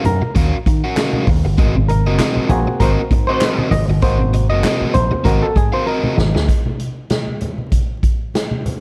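A bright, punchy slap bass run through an envelope filter drives this hypnotic 98 BPM funk clip from a longer piece, swinging on the 16ths over Ebm9 and Ab9 while a stringy, percussive clav takes the solo on top. Crunchy overdriven guitar fills in the accompaniment, and a clear, tight vintage horn section slips in briefly in the background at 2.8 seconds. A natural-sounding big-room drum kit with handclaps and distant, low-tuned congas carry on by themselves after a drum fill at 5.9 seconds, running to 8.8 seconds under light reverb, a dark production and vinyl crackle.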